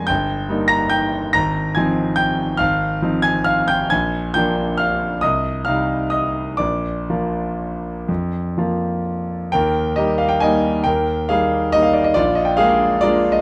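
Elegant and sparkling, this classical piano waltz in Eb major sways in a rubato 3/4 between 119 and 152 BPM, its solo concert grand sitting up front through close, detailed microphones with light reverb, smooth and vintage in tone with a deep bass across a span from G1 to C7, as the harmony moves from Eb/G through Fm7/Ab, Bb and Cm before a new section at 9.5 seconds returns to Eb and reaches Bb7 at 12.2 seconds, shortly before this passage cut from a longer piece breaks off at 13.4 seconds.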